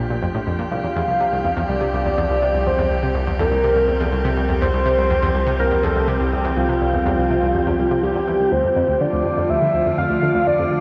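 A shimmering pulse-width lead sits up front in this sequencer-driven ambient space music, entering at 0.7 seconds with a dark, retro melody colored by vibrato, a moving notch, chorus and analog delay. Beneath it, a round analog pluck repeats a low riff with a fast attack, short decay, ring modulation and a filter sweep, its own chorus and delay adding to the bright edge. An evolving, detuned wavetable pad fades in over the opening 8.5 seconds, its morphing sustained chords bathed in chorus and built-in reverb, while a deep sine sub bass holds the floor. In the background, an airy, breathy tuned noise texture drifts like wind through its own reverb. The piece moves at 123 BPM in a straight 4/4, settling on D minor at 8.5 seconds, and the whole cut is steeped in a huge, wet reverb and the warbling pitch drift of worn cassette tape, giving it a luminous, cosmic mood.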